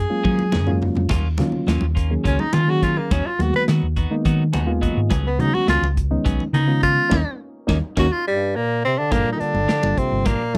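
A smooth, up-front tenor saxophone solo with slapback echo opens this driving, funky electric jazz fusion fragment in 7/8 over a round, hollow-body fingered bass, joined at once by a reedy, lightly overdriven electric piano with spring reverb, bright, twangy clean guitar stabs with subtle chorus, a tight, dark drum kit with fills, and thick-skinned congas in the background, before a mellow, distant bass clarinet with scooped notes and slapback echo enters at 8.3 s, all in a dry, close 1970s-style studio sound.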